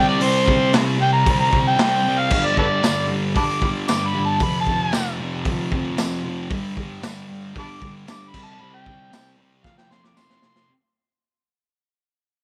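An amplified, overdriven harmonica takes a gritty solo over a thick, double-tracked fuzz guitar riff from the opening moment, with scooped notes, tongue slaps and light vibrato giving this swaggering, rowdy garage rock clip its 115 BPM strut in G mixolydian. A raw, saturated drum kit with a punchy kick, dark cymbals and a pumping small-room sound joins up front at 0.2 seconds, while a jingly tambourine sits distant in the background from 2.8 seconds. The whole passage fades out under light reverb, closing on a drum fill at 9.6 seconds.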